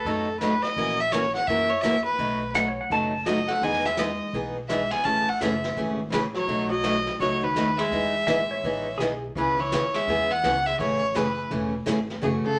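A nasal, lightly vibrato fiddle leads this playful, down-home western swing at 168 BPM in E major, with brief twangy lap steel slide phrases, a bright parlour acoustic guitar up front, a woody, growly upright bass, a distant brushed drum kit, and a dark hollow-body archtop guitar joining at 3.3 seconds, set in club reverb.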